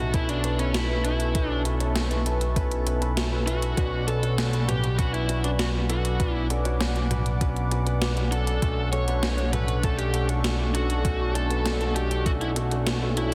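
A biting, overdriven electric guitar carries the melody through this moody, nocturnal synthwave excerpt in B minor at 99 BPM, its bright picked lines trailed by delay. Beneath it, a fat, detuned sawtooth bass sits up front with a filter sweep, while a brassy, evolving analog pad holds chorused chords with sidechain pumping, and a natural grand piano adds stabs treated with tape echo. A thumpy, gritty electronic kick and a gated 80s drum machine with hi-hat, toms and a gated-reverb snare, both re-recorded in a large room, push the dense, heavily limited mix as the harmony moves from Aadd9/B to Bmadd9 at 3.8 seconds.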